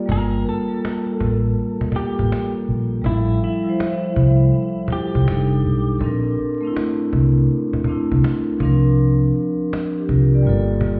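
Hazy and reflective, this lo-fi hip hop fragment drifts along at 81 BPM in 4/4, with a 65% swing on the sixteenths, in G dorian and tuned slightly sharp to A4 = 445 Hz. Up front, a dark, round, foam-muted electric bass carries the low end, while a metallic vibraphone, played with medium mallets and the motor off, rings through a cassette tape colouring as it lays down the chords. A clean, compressed electric guitar sings a short fingered melody from 0.1 to 6.0 seconds, sitting quietly in the mix. A woody cajon, played with soft hands and faint snares, stays close and dry at a low level for the whole 11.0 seconds. The harmony moves from Gm9 through Fmaj9/A, F13, Bbmaj9 and C9sus4 before settling back on Gm9. The whole mix sounds muffled, as if heard through a wall, with a stone room reverb, a small room ambience and a veil of vinyl crackle.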